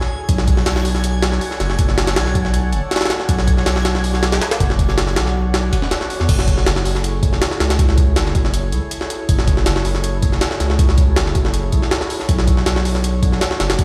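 Heard through a big sound system in a bare room with large studio reverb, this nostalgic, atmospheric jungle drum and bass excerpt sets a gritty, compressed, pitched-up sampler-style kit of thumpy kick, high-tuned snare, hi-hat and crash up front beside a thick, saturated sub bass that enters at 0.3 seconds, while a dreamy, reversed, swelling granular texture shimmers brightly in the background until 6.3 seconds over chords moving from Bm9 to F#m9.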